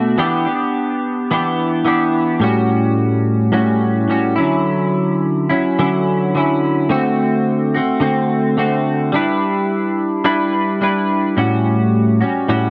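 A lone clean electric guitar opens this hazy, sunny indie pop excerpt, its twangy, compressed picking sitting up front and colored by analog chorus, a warbly pitch drift and tape echo. Moving through chords such as Em7, Dmaj9, D7 and G6 in a steady straight four, the guitar spans from its low register up to the upper middle. A small, reverberant room and a dark, warm production wrap the sound.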